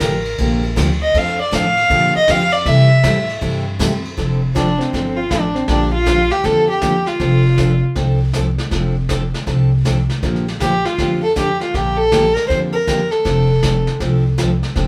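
A dark, woody fiddle opens this playful western swing excerpt with a solo over picked acoustic guitar, pizzicato upright bass and brushed drums, swinging at 159 BPM in F major. The up-front fiddle carries the melody with light vibrato, drops out at 7.8 seconds and returns at 10.6, while the bright, full-bodied dreadnought guitar, the growly, thumpy bass and the warm brush kit with its rolled-off top and punchy kick play throughout. The band sounds as if it is playing live together in one studio room, with a short, wet ambience around it.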